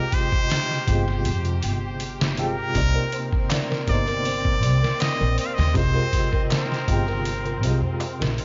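A muted trumpet sings a nasal, scooped melody over soft felt-muted piano with tremolo and tape echo and veiled con sordino strings in this hypnotic, melancholic trip hop excerpt in C minor at 80 BPM, joined by gritty, pitched-down sampler drums with a thumpy kick, woody pizzicato upright bass from 0.9 seconds, a delicate tinkling music box from 3.0 seconds, and a very quiet metal-shell darbuka, all drifting through an echo-heavy small room over Abmaj13, Cm9 and Bb9sus4 before a fade-out beginning at 6.8 seconds.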